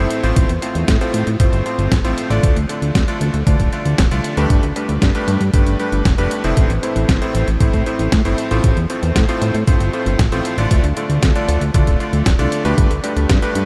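Danceable and bittersweet, this italo disco excerpt at 116 BPM sets clangy, up-front electric grand piano stabs with delay over a fat, saturated analog bass, also with delay, while a thumpy electronic kick entering at 0.4 seconds and a detuned 8-bit drum machine's hi-hat and snare drive a straight 4/4 through F/A, Dm, Gadd9 and Am chords, all bathed in a huge, dreamy reverb.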